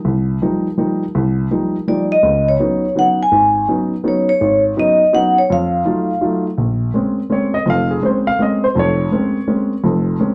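A vibraphone played with medium mallets carries the melody from 1.9 to 6.4 seconds, its metallic, ringing tone colored by a slow motor vibrato and a vintage, band-limited character that sits up front. Beneath it, a dark baby grand piano provides accompaniment throughout this short jazz excerpt, mellow and intimate, with audible action noise and a short, natural sustain. The music moves in a swinging triple metre, giving it the lilt of a jazz waltz with a hypnotic, intense mood. Suspended ninth chords open the harmony before a brief altered dominant leads into a minor ninth chord as a new section begins at 6.6 seconds, where the piano continues on its own. A moderate club reverb and a dusky, rounded production lend the whole a close, late-night atmosphere.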